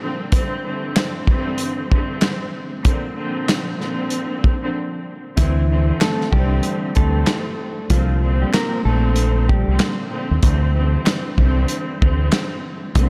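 A swung boom-bap hip-hop groove at 95 BPM in 4/4 drives this gritty, tough excerpt in D minor, with a soul drum kit entering at 0.3 seconds with kick, snare, hi-hat and handclaps, its tight kick and medium-tuned snare sitting up front in a small-room sound with a rolled-off top. A rich studio string section carries the accompaniment from the start, bowed with vibrato and a smooth top, filtered and given a cassette-tape grit as it moves between D9sus4 and C9sus4 chords. After a short break, the second section opens at 5.4 seconds as a deep, round dub bass arrives, fingered and punchy, the loudest part of the arrangement. A clean, dark electric guitar plays the melody in the same stretch, treated with spring reverb and analog delay. Barely audible finger snaps add a close, human touch, and the whole mix is soaked in a moderate cathedral reverb that gives the hard-edged beat a dreamy haze.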